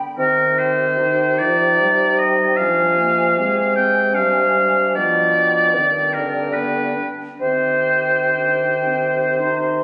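Caught on a phone in the room, with studio reverb and compression added over a moderate scoring-stage ambience, this short cut from a longer classical piece is a slow, elegiac movement for wind quintet in C minor, set in 3/4 at 74 BPM with uneven, rubato beats and tuned to A4 = 435 Hz. The silver concert flute opens at 0.0 s and carries the melody between G5 and C6, airy and soft-edged with expressive vibrato, though it sits in the background. From 0.2 s the clear oboe, up front with light vibrato and a vintage tone, sings a second line beneath it. The dark French horn, smooth at the top, and a distant, roomy clarinet of mellow colour fill in the accompaniment, while a warm bassoon anchors the bass with light vibrato. The harmony moves solemnly from C minor through a half-diminished chord over C and G7 over B before settling back on C minor at 7.4 s.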